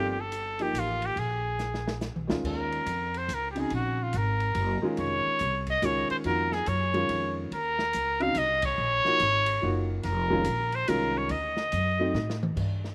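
A swung 3/4 pulse at 142 BPM drives this spiritual, searching modal jazz fragment in Eb dorian, cut from a longer piece, with the open acoustic drum kit entering at 0.3 s, its dark cymbals and boomy kick sitting low in the mix, and a fill arriving at 1.6 s. Up front, a clear, vintage-toned trumpet sings the solo melody with vibrato and a slapback echo, while a woody upright piano with boxy, short-sustain chords, also carrying slapback echo, comps beneath it over a thumpy pizzicato upright bass. The band lands a shared accent at 8.6 s, and the dry sound has little reverb and an open-air feel.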